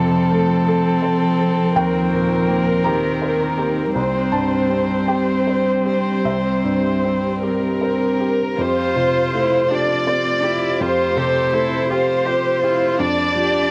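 From the first moment, a chamber violin section sings a hopeful, tender melody up front with vibrato and a soft sul tasto touch, over a cello's second line, a viola's airy-bowed accompaniment, a felt-muted upright piano's mellow accompaniment and a dark, detuned organ-like pad sitting very quiet beneath. This fragment of a neoclassical piece for piano and strings drifts in a rubato 6/8 at about 50-56 BPM in F major, and the harmony opens onto Fadd9 when a new section begins at 8.6 s. A wet studio reverb and cassette-tape grain lend the intimate, close ensemble a gently worn glow.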